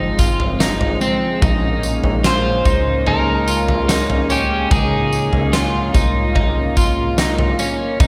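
Dream pop at 73 BPM in straight 4/4, this ethereal, blissful passage is cut from a longer piece and moves through Ab6, Bbm9 and Db6 chords. A smooth, detuned analog pad holds sustained chords with chorus, while a slightly broken-up electric guitar picks compressed arpeggios up front, dressed in lush chorus and digital delay. Beneath them, a plucky analog bass with a sawtooth and ring-modulated edge gives each note a funky, fast-attack bite that decays into a mellow tail. At 0.2 s a huge arena drum kit enters with a punchy kick, fat snare, tambourine and toms, sounding natural and acoustic in a big room. From 2.3 s to 5.5 s a twangy second electric guitar carries the melody through digital delay and slapback echo. A wet concert hall reverb with a 2.1-second decay gives the whole mix its big arena sound.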